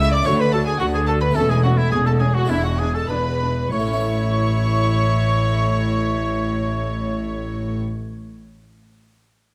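Up front, a rich, gut-string double bass section anchors this brilliant, lively baroque-style concerto excerpt in A major at 96-113 BPM, joined by a distant cello section in the background, a vintage-toned solo oboe and a close, reedy violin section carrying the melody, a second violin line, a dark viola section and a dry, plucked harpsichord inside a moderate recital hall, as the tempo slows through the first 3.7 seconds over D, A/E and E7 before settling on A.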